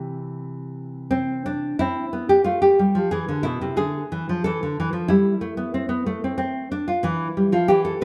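A fingerpicked, full-bodied nylon-string guitar plays alone and up front throughout this short fragment of a serene, radiant classical piece in a baroque dance style, moving with a flexible rubato feel in 4/4. Its harmony passes from C to A minor at 1.8 seconds, then through E7 and back to A minor before settling on a rootless C/E at 7.0 seconds. A moderate recital-hall reverb and a dark production give the solo line a calm, resonant glow.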